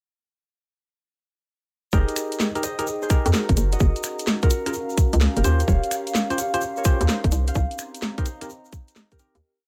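UK garage in a two-step style, this short, moody piece skips along at 128 BPM in F minor with a heavily swung sixteenth-note feel. From 1.9 seconds the drop arrives: a tight, up-front electronic kick plays a two-step pattern, a grainy tube shaker ticks out hand-played sixteenths in the background, and from 2.1 seconds a garage kit adds cracking snare, finger snaps and skipping swung hats. A hollow, bouncy FM bass knocks out a syncopated line with a punchy, fast attack, while a worn, slightly out-of-tune tine electric piano drops rootless chord stabs through tape echo. Over this, a bright, thumb-plucked Celtic harp rings out a repeating riff in thirds and sixths, trailed by dub echo. From 2.5 seconds a dark, nostalgic, lo-fi pad warbles in the background with chorus and sidechain pumping, carrying the chords from Fm11 through Gbmaj7 and Eb13 to Cm7 before the whole piece fades out from 6.9 seconds.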